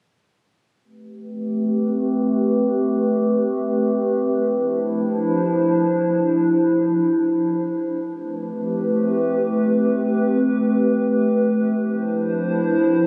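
A warbly, tape-like pad fades in at 1.3 s with slow-attack sustained chords, alternating Am9 and Dm9 in A minor, in this spacious, melancholic fragment of a free-time hip hop piece tuned to A4 = 439 Hz. The detuned, dark pad sits up front with chorus, its own reverb and a low-pass filter that sweeps across the whole passage, giving it a nostalgic lo-fi character. Captured on a phone in the room and then bathed in a huge, wet ambient reverb with a 9.1 s decay, the sound hangs in the air until 13.1 s.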